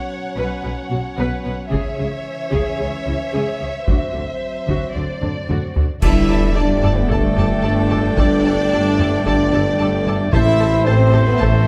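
Epic orchestral film score at 112 BPM, dramatic and cut from a longer piece. It opens with a lush, expressive violin melody over a focused second violin line, mellow and distant French horn chords, smooth violas, a dark cello section and rich double basses, with hard-stick taiko drums entering at 1.7 seconds. A drum fill leads into a full-band accent at 6.0 seconds, where dark clash cymbals with concert bass drum strike and a bright trumpet adds stabs over very quiet trombones, a background string section holding sustained chords and a smooth-topped tuba on the bass, before very quiet hard-mallet timpani sound at 10.3 seconds as the harmony moves to A minor, all heard in a moderate scoring-stage reverb.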